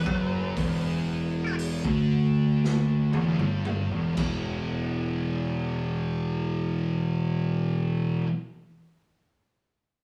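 This excerpt of brooding, ominous stoner and doom metal opens at once on a crawling 58 BPM in E minor, with two thick fuzz guitars picking a heavy riff between E2 and E3, one dark and the other mellower and set further back. A fuzz lead guitar, dark, compressed and colored by wah and distortion, plays a short solo line up around B4 and falls away at 1.6 s. Underneath, an up-front fingered electric bass with overdrive sounds bright, growly and punchy as it moves between E1 and D2. A raw garage drum kit with crash, hi-hat, kick, snare and toms has a gritty, saturated tone with a rolled-off top, a punchy kick and a pumping small-room sound; it breaks into a fill at 2.6 s before stopping at 4.4 s. The harmony moves from Em to an E5 power chord as the guitars and bass carry the riff on through a damp stone-room reverb that makes the band sound as though it is playing live together in one small space.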